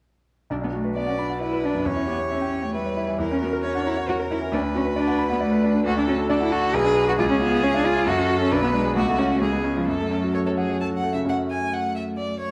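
Close, detailed microphones capture a piano trio in a moderate recital hall, where a 1.7-second reverb gives the sound a natural bloom. This quick classical-period movement, cut from a longer piece, moves in 3/4 at 134 BPM with a straight feel and a restless, urgent mood. It opens in B minor and turns toward F# minor from 5.9 s, with chords such as C#dim/E and F#7/E, and it reaches F#m through C#7. The bright concert grand piano sits up front as accompaniment from 0.5 s, brilliant and polished with deep bass. Beside it the bowed cello carries a second line with a focused, warm tone, vibrato and a smooth top. The violin takes the melody from 1.0 s in a rich, even voice with vibrato, set a little distant, and a brief new section begins at 11.3 s before the passage ends.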